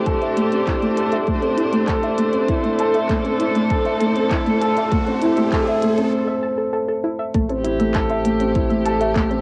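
A dark, boxy grand piano riff and a bowed string quartet sound together from the opening moment of this hypnotic, moving piano-and-strings electronica cut in A minor, set at 99 BPM in a straight 4/4. The piano sits up front with a mellow, short-sustained tone, touched by cassette tape grain and analog delay, while the chamber quartet holds sustained chords with expressive vibrato and portamento, one player per line, its plate reverb and sidechain pumping lending it a distant glow. A deep, layered electronic kick and a minimal click kit of handclaps and clicky hi-hats drive the groove alongside a very quiet pluck whose soft, round, detuned arpeggios carry a chorus shimmer and a moving notch. A faint riser enters at 1.2 seconds as the build-up gathers, leading through a brief break into the drop at 7.3 seconds, where a round sine sub bass arrives on A1, pulsing with sidechain pumping. The whole passage, cut from a longer piece, has the intimate feel of a home cassette recording in a small, wet booth.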